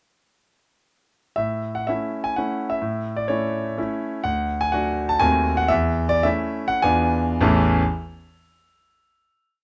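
Classical romantic triple-time dance for solo piano, rustic and proud in mood, in which a bright, vintage-toned concert grand sings a single-line melody in dotted rhythms over a waltz bass with deep low notes, moving with flexible rubato and slowing from 3.5 s until it settles on a final chord at 7.4 s, captured up front by close, detailed microphones with light reverb.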